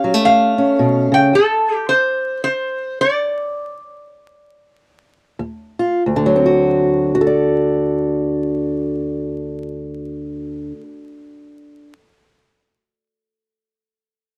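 A swung 4/4 groove at 89 to 110 BPM, slowing from 1.3 to 6.1 seconds, carries this swaggering, laid-back excerpt of acoustic country blues in D mixolydian. A metallic, nasal resonator slide guitar played with fingerpicks leads the melody up front, while a dark, woody, boxy fingerpicked old ladder-braced acoustic guitar on aged strings accompanies, stopping at 1.8 seconds so the slide carries on alone until the acoustic returns at 5.4 seconds and takes over as the slide falls silent. The dry, close 1970s-style studio sound carries vinyl crackle, moving from A7 through a break in harmony and an Ebsus2 to D7.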